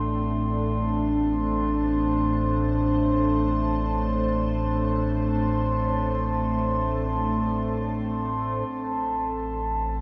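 Melancholic and serene, this free-time ambient fragment in A minor sets an up-front, morphing, detuned wavetable pad holding sustained chords through chorus, phaser and shimmer reverb, shaped by a filter sweep until 8.7 seconds, where the harmony shifts from Am to Am9. Meanwhile, a round, warm sub bass anchors a deep A and a glassy, beating glass harmonica with its own shimmer drifts above, all set in a vast, echoing space of huge reverb.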